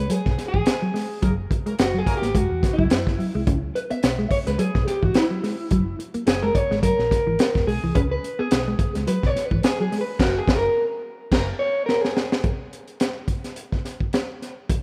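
A swung sixteenth-note groove at 107 BPM in 4/4 drives this sly, funky cut from a longer piece. Up front, a crunchy breakbeat drum kit with a high-tuned snare, tight kick, dark cymbals and a gritty, saturated, rolled-off top plays throughout, with a fill closing the opening section. Beside it, a dark, slightly broken-up electric guitar plays accompaniment while a mellow, clean guitar lays down a low riff, and a clean guitar solo runs until 12.4 seconds. A round, amped hollow-body short-scale bass, played with the fingers, holds down the bottom over rootless C#7, F#9 and C#m7 changes. A distant, roomy horn section with vibrato and octave doubling adds punchy background accents, first at 1.2 seconds and again near the end of the section. The rough home-demo mix carries light studio reverb, and the drums play alone from 12.4 to 14.8 seconds.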